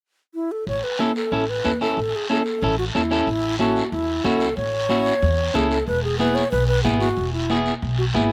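Sunny and festive, this cumbia excerpt opens with a breathy, bright alto flute up front, playing a tongued, slightly unsteady melody with vibrato from 0.3 seconds. At 0.7 seconds a woody, thumpy pizzicato upright bass joins alongside high-tuned congas struck with hard hands in the background and a raspy, vintage guiro touched with slapback echo. At 1.0 seconds a picked electric guitar, slightly broken-up and also carrying slapback echo, adds up-front accompaniment, all set in light reverb with an open-air outdoor feel.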